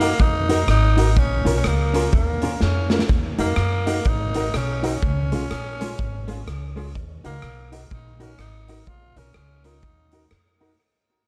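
A mischievous, driving ska groove in Eb minor starts at once, with a raspy tenor saxophone carrying the pop-style solo melody over the full band at 124 BPM in 4/4 with a swung eighth-note feel. A pizzicato upright bass on gut strings sits up front with a thumpy, woody tone, beside a raw garage drum kit built on hi-hat, punchy kick, rim click and snare, recorded in a bright stone room with a pumping, saturated grit. The clean, fingered hollow-body jazz guitar is compressed and tucked in the background. A clear vintage upright piano plays short-sustain stabs there too. The saxophone, bright with vibrato, and the guitar both carry a dub echo, while the chords move between Ebm, Bbm and Db under light reverb and a dark, warm production. A drum fill breaks in at 2.6 seconds, the saxophone drops out at 10.3 seconds, and the whole clip, cut from a longer piece, fades out from 0.0 to 10.8 seconds.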